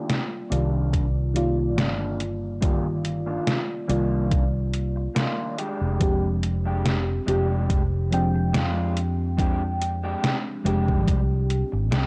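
A dry, gritty cassette-tape sound gives this short, hazy and nostalgic vaporwave fragment its worn character, built on a lightly swung groove. A soft FM electric piano with a phaser and chorus carries the chords from Cm11 to Fm69 at 5.6 seconds, while a slightly broken-up picked guitar through a small old amp plays a dark riff under a filter sweep. An up-front, round fretless bass enters at 0.5 seconds, and a detuned 8-bit drum machine with an overdriven snare and hi-hat is joined by a thumpy electronic kick from 0.9 seconds.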